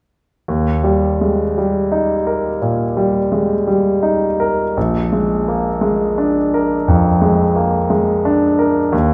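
Serene and lyrical, this short classical excerpt, cut from a longer piece, unfolds in a gently flowing 12/8 with a rubato feel. A bright concert grand piano carries the accompaniment on its own, sounding from 0.5 s to 9.1 s and spanning a deep bass up into the middle register. Its tone is brilliant and smooth with a vintage character, and it sits up front in the sound. The harmony rests on the home chord before turning to the dominant seventh at 4.8 s, leaving the phrase poised to continue. A wet recital hall reverb surrounds the instrument with a lingering, spacious ambience.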